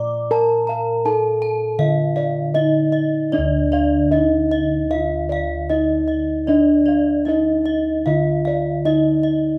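Stately and hypnotic, this short cut from a longer Javanese gamelan piece moves at 76 BPM in a straight 4/4, set in D pelog. A bronze metallophone carries the melody between D4 and D5 with a mellow, soft tone from padded disc mallets, sounding vintage and band-limited up front in the mix. Above it, a second metallophone plays arpeggios from D5 to D6, struck with a horn mallet for a bright, full sound whose paired tuning produces shimmering beats, close-miked and touched with plate reverb. Bossed gongs anchor the bass from D2 up to Bb4-20c, round and mid-forward with padded beaters, while a darker, smooth set of gongs adds its own arpeggios with plate reverb from 0.3 s to 9.3 s. The music shifts into a new section at 3.3 s, all heard through a wet studio reverb in a rough home demo mix.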